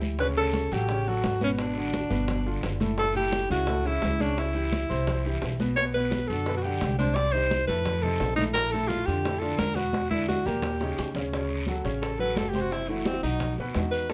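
A clear, up-front alto saxophone with light vibrato and scooped notes carries the melody from 0.2 seconds in this sunny, sophisticated Afro-Cuban jazz excerpt in D major at 172 BPM, backed by a natural-sounding baby grand piano, a woody, dark, thumpy pizzicato upright bass, close and dry thick-skinned congas, round low-tuned bongos sitting in the background, and a raspy guiro, all within moderate studio reverb, with a drum fill at 9.9 seconds leading into a sax solo at 11.3 seconds over rich, shifting jazz harmony.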